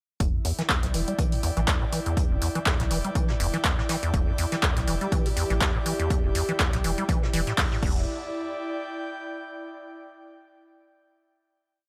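A squelchy, resonant square-wave acid line with accents and slides and a filter sweep leads this gritty, trippy acid house piece, riding over a deep sine sub bass, a punchy four-on-the-floor kick, overdriven drum-machine hats, claps and crash, a very quiet brushed breakbeat, and an airy, breathy pad of slowly shifting chords, with a warbling, lo-fi pad holding a high note from 5.0 to 7.8 seconds before a final Em7 rings out until 10.0 seconds.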